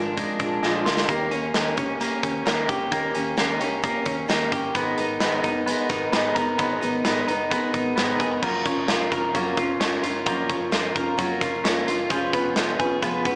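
Breezy and bright, this jangly indie pop excerpt moves at 131 BPM in a straight 4/4, with a full-bodied picked steel-string acoustic guitar and twangy, compressed twelve-string electric arpeggios steeped in spring reverb sitting up front, a big rock drum kit with a punchy kick and rolled-off top entering at 0.2 seconds and playing a quick fill soon after, and a dark, round muted bass tucked in the background, all under light reverb and a small-speaker sound as chords shift from Bb7 through Abmadd9 to Gbmaj7 and Db7/F.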